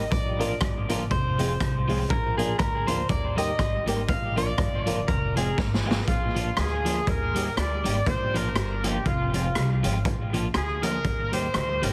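This bouncy, upbeat ska excerpt at 121 BPM in Bb mixolydian, with a swung eighth-note feel, opens with a compressed, slightly broken-up picked electric guitar playing the melody over a second guitar's twangy accompaniment, a woody pizzicato upright bass, and a gritty, boomy, saturated garage drum kit, soon joined by intimate upright piano stabs with audible action noise. After a drum fill, a punchy, vintage horn section with light vibrato carries the melody from 6.1 s, up front with a loose pop-style section feel. Analog delay colours the guitars, drums and horns, and the whole piece sits in light reverb with a heavily compressed, radio-like sound.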